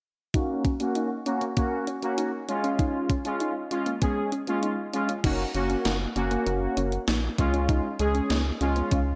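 Wistful and nostalgic, this 98 BPM synth-pop fragment in F# major sets a fat, brassy analog synth brass with chorus and a filter sweep over a soft, round plucked arpeggio with digital delay in the background, all driven by a gated 80s digital drum machine with a thumpy kick, overdriven hits and a gated-reverb snare, before a rubbery, hollow square bass enters up front at 5.2 s as the chords alternate between F# and C#, all framed in a moderate plate reverb and bright 1980s-style digital production.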